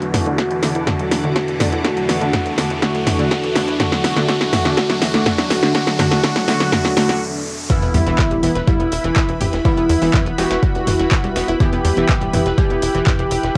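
A thick, bold unison synth lead with vibrato and tape echo carries the melody in this dark, dramatic melodic techno excerpt at 123 BPM in E minor, over a punchy, up-front analog drum machine of handclaps, hi-hat, snare and toms, a tape-saturated electronic kick from 0.4 s, a tight sawtooth sequencer bass, sidechain-pumped detuned pluck arpeggios and brassy stabs, a very quiet resonant evolving pad, a mellow ethereal pad, an overtone-sweeping drone that stops at 7.2 s, and a riser and sub drop, as filter sweeps on the lead, pluck and stabs build toward a brief stop and a drop at 7.7 s, where an eerie, inharmonic FM bell and a gritty, very quiet sampler-style kit of hi-hat and snare join, captured as a home cassette recording in a moderate room.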